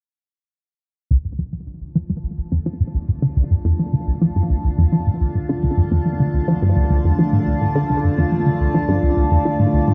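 Cosmic and expansive, this cut from a longer piece of ambient, sequencer-driven space music in D minor moves at 106 BPM, where a squelchy, resonant blip pluck plays a low riff with chorus and analog delay from 1.1 seconds, an evolving, mellow wavetable pad fades in with sustained chords from 2.6 seconds through chorus, phaser and shimmer reverb, and a filter sweep shapes the plucked line, all set in a dark production with a huge 8.3-second reverb tail.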